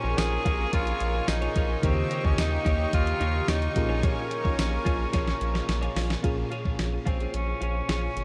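Soaked in a huge, dreamy ambient reverb with a 7.3-second tail, this urgent, dramatic fragment of 1980s-style pop moves at 109 BPM in a straight 4/4, cut from a longer piece and set in Bb dorian over Bbm7 and Eb7 chords. A raspy, gritty tenor saxophone carries the melody up front with a punchy, vintage pop tone, its notes trailing into a diffuse ambient delay. Beneath it, a round, deep analog bass anchors the low end while a clean 12-bit digital drum machine, with a thumpy kick, fat snare, hi-hat and tambourine, drives the beat and throws in a fill at 5.1 seconds. A glassy, bell-like FM electric piano warbles through chorus in the background, and a twangy twelve-string electric guitar picks a riff through ensemble chorus and delay. A bold, brassy sawtooth pad holds sustained chords until 6.2 seconds, when the music shifts into a new section, and a tight, distorted, double-tracked guitar sits very quietly in the mix until 6.8 seconds.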